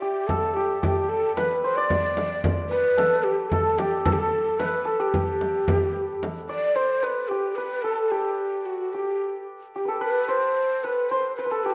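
Persian modal ensemble music in G dastgah mahur, this passionate excerpt moves at 111 BPM in a straight 3/4. A breathy, mellow end-blown ney carries the melody up front with vibrato and tongued, expressive phrasing, while a bright, shimmering hammered santur rings out a second line alongside it, both playing throughout. A close, dry frame drum adds percussion until 6.4 seconds, shortly before the music shifts into a new section at 6.8 seconds, all set in the glow of a recital hall.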